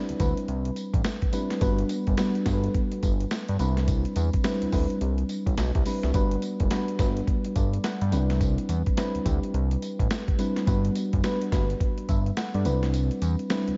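A dreamy, reverb-soaked mix with a dark, rolled-off top end opens this short, flirty and upbeat new jack swing cut, taken from a longer piece and moving at 106 BPM in 4/4 with a loose swing on the sixteenths. A mellow FM electric piano carries the harmony up front, its round, full-bodied tone touched with a noise layer and coloured by chorus and phaser as it alternates between Cmaj9 and Gmaj7. Beneath it, a fat analog bass blends sawtooth and square-wave character, detuned and thick, with a moving notch shaping its sustained notes. The dusty sampler-style drum kit sits forward with hi-hat, snare, tambourine and a thumpy kick, its compressed sound roughened by overdrive and vintage 12-bit grit. The kick drops out at 12.9 seconds, leaving the other drums, piano and bass to carry the final moments in a moderate plate reverb's glow.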